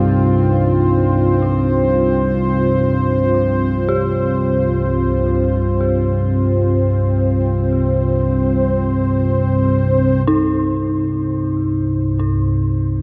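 A free-time dark ambient drone in C minor, this short cut from a longer piece feels desolate and cavernous, resting on a single C minor chord throughout its 13 seconds. At the bottom, an analog drone built from sawtooth and pulse waves with pulse-width modulation sits up front, its slow attack and long release giving it a warm, evolving presence. Above it, a dark analog pad holds sustained chords from C4 to G5, its detuned sawtooth and triangle layers and sub octave making it deep, moody and full-bodied, also placed up front with chorus. A detuned FM synth bell traces quiet arpeggios between Eb4 and G4, its fast attack and decaying, inharmonic tone sounding eerie through chorus and delay. All three parts play from the start to the end, bathed in a wet cathedral reverb with a 5.4-second tail that sets them in a vast, echoing space, with a shift in the music arriving at 10.3 seconds.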